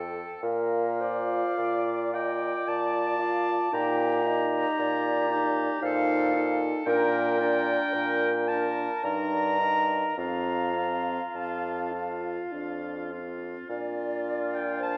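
Serene and warm, this slow romantic movement for wind quintet unfolds in Bb major at a gentle 50 to 58 BPM in 3/4, its rubato phrasing lending it an unhurried, breathing quality. A hollow, airy silver concert flute carries the tongued melody with vibrato, sitting in the background, while a clear oboe with light vibrato traces a distant second line beneath it. A mellow bassoon anchors the bass up front from the start, joined at 0.4 seconds by a soft-attacked clarinet playing accompaniment high in its range, and at 1.0 seconds by a French horn with a smooth top and light vibrato. The harmony moves from Bb through Eb/Bb and F7/Bb, passes through Eb/G and F, and comes home to Bb at 13.7 seconds. The ensemble sits in a wet scoring-stage reverb, and a worn cassette tape quality adds a warbling pitch drift to this excerpt cut from a longer piece.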